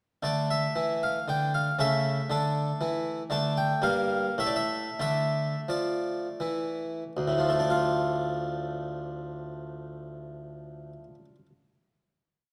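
A solo harpsichord opens this short, grave yet flowing baroque-style suite movement in D minor and 3/4, its airy, plucked, brilliant French-style tone with octave strings sitting up front as a single-line melody rides over a walking bass, the rubato pulse moving between 74 and 119 BPM and slowing from 2.5 to 7.2 seconds before a final chord rings on in a wet recital-hall reverb, within a dark, warm production, until about 11.9 seconds.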